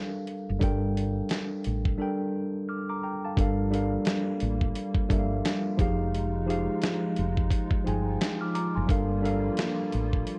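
A gritty, compressed sampler-style drum kit sits up front in this hazy, reflective lo-fi hip hop excerpt, its thumpy kick, medium-tuned snare and hi-hat sounding as if re-recorded in a small room, at 87 BPM in 4/4 with a 60% swing on the 16ths. Alongside it, a worn, slightly out-of-tune tine electric piano carries the accompaniment from the opening moment, softened by cassette tape character and a low-pass filter. A dark, round fretless bass with a woody, punchy tone adds a touch of ensemble chorus to the low end. A break arrives from 2.0 to 3.4 seconds, and at 3.6 seconds a soft, flute-like pad enters in the background, its detuned, slow-attack chords blurred by chorus and filtering. The harmony moves from Gm9 to Fm9 and back to Gm9, and the whole mix carries light reverb and a dusty cassette sheen.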